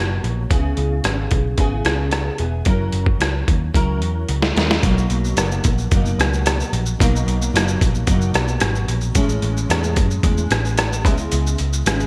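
This sunny, dreamy bedroom-pop excerpt in B major opens on a fingerpicked nylon-string guitar, full-bodied with faint finger squeak and a warbly, chorused drift, alongside a dark, round, foam-muted electric bass, over chords moving from Bmaj7 through C#m7 and F#7. At 0.2 s a gritty, pitched-down boom bap kit arrives up front at 111 BPM, its thumpy kick, high-tuned snare, rim click, hi-hat and shaker overdriven and washed in gated reverb, with a drum fill from 3.8 s leading into a second section at 4.8 s that passes through Amaj7. The bright 1980s-style digital production sits in light reverb and keeps a straight 4/4 indie-pop feel.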